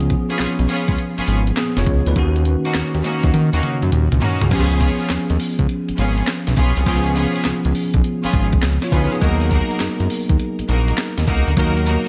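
New jack swing R&B at 102 BPM with a swung sixteenth-note feel, punchy and slick, cut from a longer piece. A fat, detuned, saturated sawtooth bass sits up front beside a thumpy, sampler-style 12-bit drum machine playing kick, snare, hi-hat, handclaps, toms and crash, while a bell-like tine electric piano with ensemble chorus carries the C#7 and D#m7 chords. Lush bowed strings with vibrato add tape-echoed stabs from 0.3 s, and a drum fill at 3.3 s leads into a new section at 4.5 s, the mix sitting in light reverb.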